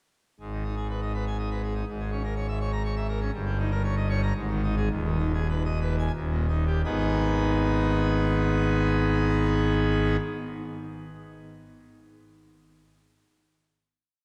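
In a straight triple metre, this brief, complete organ toccata surges forward with a dramatic, stormy mood before slowing down between 2.6 and 6.8 seconds. A single pipe organ carries everything as the solo voice, playing on full organ with bright mixtures and a majestic, brilliant tone. Sweeping arpeggios and romantic voicing fill its span from the deep pedal register up into the treble, and the instrument sits up front in the mix. The harmony travels through dark minor and dominant colours toward a closing tonic chord that begins at 6.8 seconds and sounds until the organ stops at 10.2 seconds. A long cathedral reverb lets that final chord hang in the air, and the overall production leans dark.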